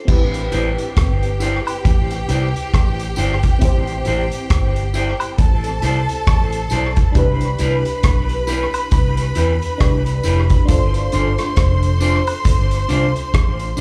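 Heard through a club PA with a light reverb, this bittersweet, smooth lovers rock reggae clip sets a dark, foam-muted electric bass and a punchy vintage drum kit with tape echo up front, while a phased FM electric piano with tremolo and slapback echo, a lush bowed string section, clean fingered electric guitar stabs entering at 0.5 s, and a tambourine and woodblock in the background drift over chords moving from Am7 to Cmaj7 at 7.2 s and G7sus4 at 10.7 s.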